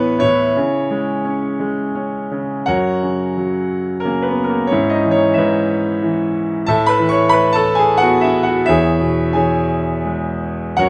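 Moving in a rubato 3/4 that drifts between 80 and 94 BPM, this short cut from a longer classical work is a lyrical solo piano piece in C# minor with a bittersweet, brooding mood. A bright concert grand carries everything from 0.0 to 10.9 s, ranging from E2 up to C#6, and sits up front with a brilliant, open tone, deep bass and long sustain. The harmony opens on Asus2 before settling on C#m, then a new section begins at 2.7 s with F#, moving through C#m7/G# and Asus2 to close on E6. A moderate studio reverb gives the instrument a modest sense of space around its ringing notes.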